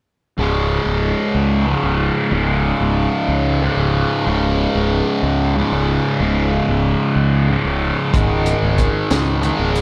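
In a slow, straight 6/8 at 62 BPM counted in dotted quarters, this trippy, mysterious psychedelic rock fragment is cut from a longer piece. A fuzz guitar carries the riff from 0.4 seconds, bright and double-tracked, sitting up front with distortion and a phaser coloring its picked low register. Beneath it, a fingered electric bass with overdrive adds a round, fuzzy foundation in the deep range. The harmony rests on a C#5 power chord before moving to G#5 over C# at 8.1 seconds, the same moment a crunchy breakbeat drum kit arrives with hi-hat, a punchy kick and a high-tuned snare, its sound gritty and saturated with a rolled-off top. A small room ambience with light reverb frames the whole.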